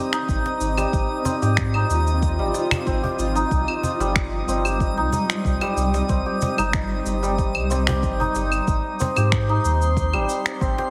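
A santur's shimmering, up-front hammered arpeggios ring out over a blurred, detuned granular cloud pad pumping under sidechain, with a sparkling twinkle of granular texture above, as tape-warm electronic finger snaps, shaker and claves, a deep electronic kick, snappy close-miked cajon and a round sine sub bass settle into an earthy, mystical organic downtempo groove at 93 BPM in 4/4, moving from Ab6 to Cm and back to Ab, all bathed in lush hall reverb with a heavily compressed, radio-like sound in this short cut from a longer piece.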